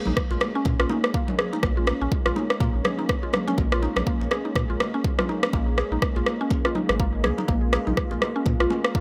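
An overdriven electronic kick drum sits up front with a deep, gritty punch, alongside an equally overdriven electronic rim click, both carrying the roomy character of a small space. This is a spiritual, earthy afro house groove in 4/4 with a swung sixteenth-note feel, cut from a longer piece. High-tuned congas with a thin, bright skin and a vintage, band-limited tone are struck with hard hands and run from 0.1 seconds to the end. Beneath them, a round sine sub bass holds low sustained notes with a fast attack, while a woody, FM-style mallet pluck plays arpeggios touched by subtle chorus and delay. A smooth, detuned sawtooth pad with a slow attack and long release sustains a single Bbm7 chord, its warm glow thickened by chorus and, like the bass and pluck, pumping with sidechain compression. Light reverb ties the mellow synth layers together around the upfront drums.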